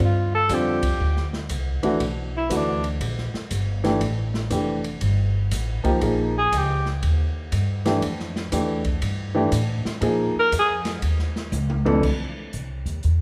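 Small-group swing and bop jazz at 120 BPM in F major, relaxed and swinging, cut from a longer piece: a clear, roomy tenor saxophone with light vibrato takes a solo in short phrases over woody, thumpy pizzicato upright bass, a present grand piano with long sustain, and an airy drum kit with dark cymbals and a boomy kick, whose fill at 11.5 seconds hands off to a brief bass solo at 12.0 seconds, all set in a moderate recital-hall reverb.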